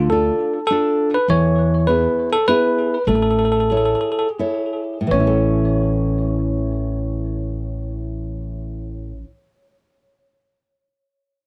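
Romantic and sunny, this short cut from a longer Italian folk serenade sways in a rubato 3/4 at 82-103 BPM in A major, easing down between 1.3 and 5.1 seconds as the harmony moves from D minor through E to A before a new passage begins at 5.1 seconds. A bright, bell-like tine electric piano carries the melody up front with a touch of tape echo, over a full-bodied, fingerpicked nylon-string guitar and a woody, thumpy pizzicato upright bass on gut strings. The sound is a dry, close 1970s-style studio recording with light reverb.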